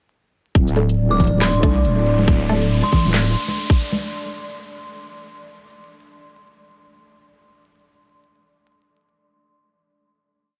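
Heavy and brooding, this short deep dubstep piece moves at 139 BPM in a swung half-time feel and builds from 0.6 seconds to its close, with a riser joining at 1.8 seconds over a filter sweep on the stabs. An overdriven, up-front electronic kick and a garage kit of cracking snare, metallic hats and shaker sit over long, wobbling, saturated square-wave bass notes, while echoing hand-played congas sit in the background. A nasal, moody analog pad holds sustained chords, sparse resonant dub chord stabs drift through phaser and echo, and an eerie, inharmonic FM bell offers short answering phrases, all under light reverb and vinyl crackle.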